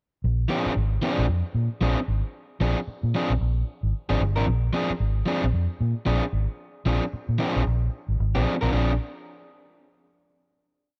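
Funk with a gritty, swung sixteenth-note feel, this short piece pairs a round, foam-muted vintage electric bass, amped and playing a syncopated riff anchored on the downbeat with muted ghost notes, against a crunchy overdriven guitar picking clipped funk chords. Both parts sit up front in a dark, dry production. The groove runs from 0.2 seconds until a final chord takes over at 8.7 seconds.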